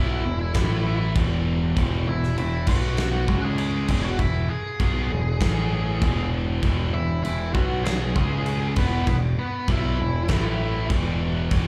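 A straight, steady 4/4 pulse drives this short cut from a longer quiet-loud alternative rock piece, heard as a live gig through the venue's PA with a touch of club reverb. The huge arena drum kit crashes in at 0.5 s, its acoustic sound big and natural, with a fat snare and a punchy kick under the cymbals. Up front, a growling picked electric bass sits low with a bright, overdriven, amped edge, while two guitars churn out the riff in the background: one biting and overdriven, the other sludgy and distorted with slapback echo. Over them, a dark octave-fuzz lead guitar carries the melody with distortion and its own slapback echo until 10.9 s. The harmony cycles through E5, A5, B5 and C#5, giving the passage a bittersweet, cathartic weight.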